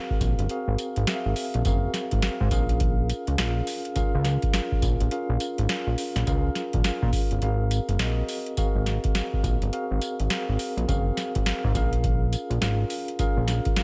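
A mellow, clean tine electric piano opens this slick, punchy new jack swing R&B excerpt at 104 BPM in Bb minor, with swung 16ths over chords moving between Ab13 and Bbm7, joined by a booming analog drum machine with a deep kick, crisp snare, metallic hats and tambourine (the kick drops out from 7.4 to 8.0 seconds) and a fat, detuned analog bass blending sawtooth, square and triangle tones with ring modulation and a filter sweep, all three parts placed up front in a digital ambience.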